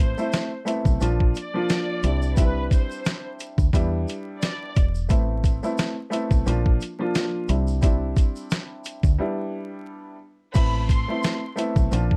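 A gritty, thumpy sampler-style drum kit with crash, hi-hat and a medium-tuned snare drives this dark boom-bap hip-hop excerpt, sitting up front over a round, foam-muted electric bass, a woody upright piano with short sustain, a grainy shaker far in the background, and a lush, distant bowed violin section whose vibrato and portamento carry the melody until 4.7 seconds before returning briefly at 10.5 seconds, all within a dark, warm production touched by vinyl crackle.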